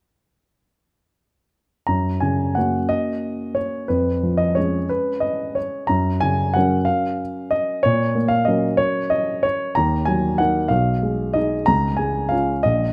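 A solo grand piano opens at 1.9 s with a playful, sparkling classical waltz in F# major, set in 3/4 at a brisk 171-197 BPM with a free, rubato feel. Its warm, short-sustained tone sits up front, captured by close, detailed microphones and framed by a moderate recital-hall reverb, while the harmony moves from F# through C#7/E# and D#m before arriving on C# at 11.7 s. Ranging from A#1 to A#5, the piano stops at 12.9 s, as this passage is cut from a longer piece.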